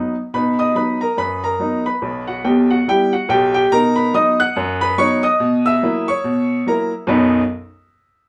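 Swung eighth notes in a brisk 4/4 drive this short stride piano fragment, cut from a longer piece, with a playful, exuberant mood. A solo upright piano carries everything, sounding clear and woody with an open, long-sustaining tone placed up front, and it spans from deep in the bass to high in the treble. The harmony circles from B to Em/B, back to B, then to F#7/B before landing on B again at 7.1 seconds as a new section begins. The piano plays from the very start until 7.4 seconds, recorded live in a small room whose wet, short reverb gives the instrument a lively, intimate presence.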